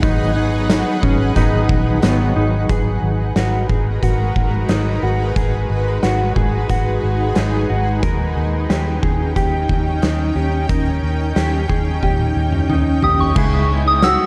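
A dark, softly reverberant mix opens this melancholic, haunting dream pop excerpt in G# minor at 90 BPM, where a shimmering, ethereal pad with chorus holds sustained chords and a mellow electric guitar, treated with analog chorus and digital delay, plays arpeggios over a round, foam-muted fingered bass sitting up front. An oversized low-tuned drum kit with a punchy kick and gritty, saturated tone in a bright stone room drives the groove, while a hollow-bodied semi-hollow electric guitar with tremolo and lush chorus adds accompaniment until 3.2 seconds and returns at 13.4 seconds. During a drum fill from 12.0 seconds, a pure FM synth bell with phaser and delay enters at 13.0 seconds as the harmony moves from G#m7 through D#7 to C#m7.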